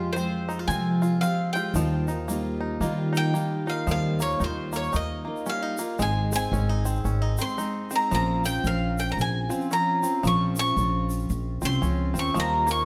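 Reflective and melancholic, this short cut from a longer acoustic folk piece moves at 113 BPM in a swung 4/4, in Bb dorian, with chords drifting from Fmadd9 through Ebadd9, Ab and Bbmadd9. A bright, picked bowl-back mandolin carries the melody up front over a full-bodied, shimmering twelve-string guitar and a woody, thumpy pizzicato upright bass. A twangy banjo adds percussive arpeggios further back, while a grainy egg shaker enters at 0.2 seconds, all within a light reverb.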